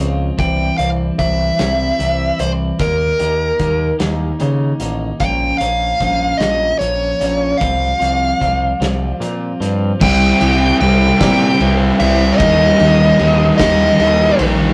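Angsty and dark, this quiet-loud alternative rock piece moves in a slow 6/8 at 50 BPM, with a bright, twangy twelve-string electric guitar picking arpeggios while a growling, overdriven bass sits up front. A dark, smooth lead guitar carries the melody over a loose indie drum kit with a punchy kick and dim cymbals, moving through C, Eb, Bbm and Csus4. At 10.0 seconds the twelve-string stops as a biting overdriven guitar in the background and a thick, fuzz-distorted guitar up front take up a riff, all heard in a rough rehearsal-room sound with moderate studio reverb.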